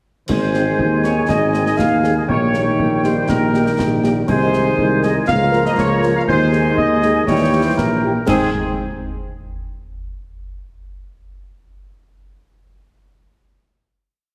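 A military-style march for wind band in Ab major, this short, complete piece moves at 120 BPM in a straight 2/4 and carries a rousing, festive mood. A dark, soft-attacked trumpet section states the melody up front with tight classical poise. Beneath it, a mellow woodwind section sings a second line in sustained chords with vibrato, while a bright trombone section holds sustained chords in the background and a French horn section adds dusky after-beat chords and held harmonies, entering at 0.5 s. A mellow tuba anchors the bass on the beats with light vibrato, and close, dry percussion sets a marching snare over a bass drum on the beat, topped by dark clash cymbals. The ensemble sits in a roomy scoring-stage reverb, heavily compressed into a radio-like sound, and the piece closes on a final Ab chord at 8.3 s.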